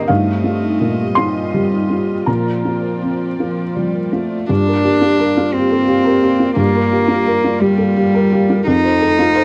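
A felt-muted upright piano, a bowed solo cello and a chamber string section holding sustained chords beneath them open this short, intimate neoclassical fragment together. The piece moves in a slow, rubato 6/8 at about 53-60 BPM in dotted quarters, tuned to A4 = 441 Hz, with a tender mood throughout. Up front, the cello carries a pure, floating second line with a soft attack and sul tasto bowing, while the piano's dark, mellow accompaniment has thick felt and short sustain. Behind them, the string section adds light vibrato and close, sul tasto warmth, and a vibraphone played with soft mallets and its motor off enters at 0.1 seconds with metallic, ringing arpeggios and tape echo, sitting in the background. The harmony moves from Ebadd9/G through Bbadd9 to Gm7 as a new section begins at 4.5 seconds, reaching F7 near the end. The sound is that of a close, dry 1970s-style studio recording with little reverb.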